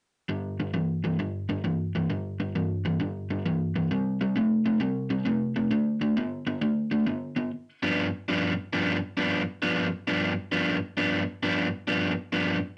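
Swung eighths at 133 BPM in 4/4 drive this laid-back, swaggering G mixolydian blues snippet, where a lone crunchy, overdriven electric guitar, picked and up front with a warm tone spanning G2 to D4, plays solo from 0.3 to 12.6 seconds through power chords on G, C and D before landing on a G7 at 7.5 seconds, all bathed in a short, wet studio reverb with a soft-edged top end.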